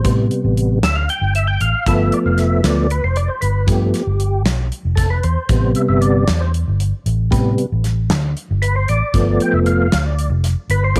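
Driving in 7/8 at 231 BPM counted in eighths, this tense progressive instrumental fragment in A minor rides on a gated 80s drum kit with a tight kick and a medium-tuned snare, while a dark, foam-muted fingered electric bass sits round and punchy beneath it. A mellow, percussive tonewheel organ takes the solo for the full 11 seconds, lightly overdriven with key click, chorus vibrato and a slow rotary speaker, over chords moving between Am7 and G7. Light reverb and a small room ambience frame the up-front parts.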